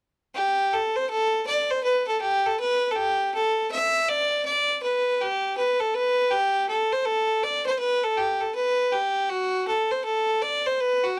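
A lone fiddle enters at 0.3 s and carries this short Celtic folk passage by itself, playing in A dorian at a brisk 161 BPM in 4/4 with a swung eighth-note feel. The mood is dark yet lively, with a driving energy that pushes the tune forward. The single player's tone is clear and biting, with an airy bow sound and a nasal, earthy edge that gives the line a rustic bite. The melody stays within a compact middle range, from F#4 up to E5, and the fiddle sits up front in the mix. Light reverb and a dark, warm production surround the instrument, and the passage, cut from a longer piece, runs until 11.2 s.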